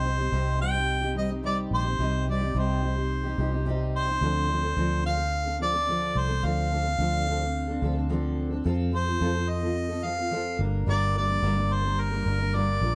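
A straight 4/4 pulse at 108 BPM carries this short acoustic pop piece in G minor, cut from a longer piece, with a tender, reflective mood. A mellow harmonica takes the melody within a range of Bb4 to G5, its tone punchy yet distant and roomy, bathed in plate reverb. Underneath, a double-tracked fingerpicked steel-string acoustic guitar with a full-bodied jumbo sound and plate reverb supplies the accompaniment. A vintage foam-muted electric bass, round and amped, holds the low end between G1 and F2. The chords move from Cm to Dm7, then shift to F at 8.7 seconds and settle on Gm at 10.6 seconds. A moderate studio reverb and a dark, warm production shape the whole piece.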